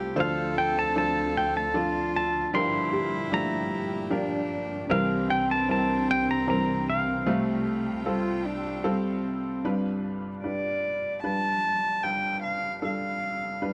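Acoustic folk-pop ballad in 3/4 at 76 BPM, melancholic and reflective, where a clean, bright pedal steel guitar with volume swells and slide carries the melody up front over a woody, slightly detuned upright piano, a rich, vibrato-laden string section holding chords, a very quiet felt-muted piano adding dark, mellow arpeggios until 7.6 seconds, and a pure, floating bowed cello that plays a second line and then takes a solo from 9.6 seconds in this dry, close, 1970s-style room sound cut from a longer piece.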